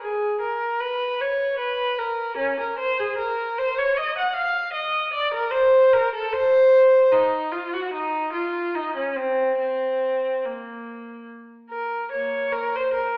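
Classical, baroque-style suite movement for unaccompanied viola in B-flat minor, moving in a solemn, grave 3/4 at around 70-78 BPM with a flexible, rubato pulse. The single bowed viola carries everything alone from the first second, its rich, smooth and even tone colored by vibrato as it ranges from Bb3 up to Gb5, with a new section arriving at 12.1 s just before this cut from a longer piece ends. The instrument sits distant in a reverberant recital hall, heard from further back in the room through a narrow, telephone-like filter.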